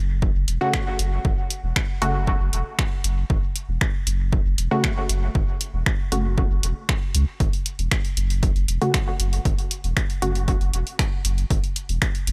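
A filtered dub chord stab floats through this meditative, deep slice of dub techno. Its muted, detuned sawtooth-and-triangle tone is plucked by a filter with a fast attack and short decay, colored by chorus, phaser, sidechain pumping and dub echo, while a filter sweep runs across it for the whole clip. Beneath it sits a pure sine sub bass, clean, smooth and dark, its sustained notes carrying tube saturation and their own sidechain pumping. An electronic kick drum with a punchy analog character enters at 0.2 seconds, joined at 0.5 seconds by a drum machine playing finger snaps and hi-hat, both tape-warm and re-recorded in a small room. The stab drops out at 10.4 seconds, leaving bass and drums to carry the close of this cut from a longer piece, which rests on a single chord throughout in a dry, close mix with every part placed up front.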